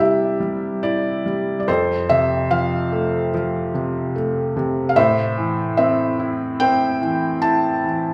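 Rubato phrasing stretches and relaxes a gentle 73 BPM pulse in 4/4, giving this brief fragment of a longer classical piece a lyrical, unhurried flow. A felt-muted upright piano plays alone throughout its 8.1 seconds, reaching from F2 up to A5. Its tone is soft and mellow, with thin felt dulling the hammers and the mechanism's action noise audible close at hand, so the instrument sounds intimate and up front. The harmony moves from C to F at 1.7 seconds and settles on A minor at 5.0 seconds, all within a calm, warm mood. A wet recital-hall reverb, recorded in a church or concert hall, lets each phrase bloom and linger in the room.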